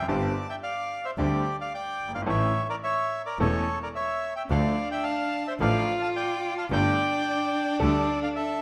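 The reedy, up-front bandoneon carries the melody from the start, its bright, airy voice singing over this short, dramatic and melancholic tango excerpt at 109 BPM in 4/4 with a rubato feel. A brilliant concert grand piano supplies the accompaniment, reaching into a deep bass, while a bowed double bass, close and earthy with a nasal, biting tone and light vibrato, holds the low end. At 4.4 seconds a rich, focused cello enters with a second line, played with vibrato and placed up front beside the bandoneon. The harmony moves through Gsus4, A, Dm and Gsus2, and the piano and bass stop at 8.0 seconds as the bandoneon and cello carry on to 8.6 seconds. A moderate scoring-stage reverb gives the ensemble a sense of space.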